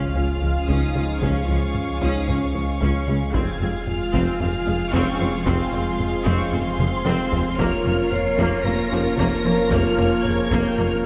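Cinematic hybrid orchestral and electronic film score, brooding and tense, cut from a longer piece. A distant, lush high violin melody and a focused, close second violin line ride over an intense viola accompaniment, with sustained chords from a background French horn section, a very quiet trombone section and a warbling, lo-fi tape-like pad. Beneath them, a rubbery square bass riff, squelchy detuned pluck arpeggios and a deep sine sub bass are joined at 0.2 seconds by a soft tuba and hushed cello and double bass sections, while a faint sub drop marks the opening impact and hard-stick taiko drums enter at 0.7 seconds, adding a fill at 6.8 seconds, all in a moderate concert hall reverb.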